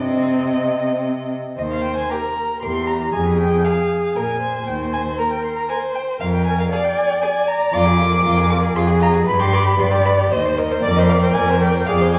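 A recital hall's lingering reverb places this string quartet at some distance, heard from further back in the room. It is a quick classical-period movement in Eb major and 3/4 at 117 BPM, cut from a longer piece, and its mood is urgent and stormy. Two rich, distant violins carry the upper lines: the first sings the melody with vibrato, portamento and expressive bowing, while the second holds a smooth, even line beneath it. The warm viola fills in the accompaniment with its own vibrato and sliding, expressive phrasing, and the clear, focused cello sits up front on the bass. All four players sound together throughout, and a brief opening gives way to a longer passage from 1.6 seconds in which the harmony darkens through a diminished chord, reaches G at 9.3 seconds, and then closes on a half-diminished chord.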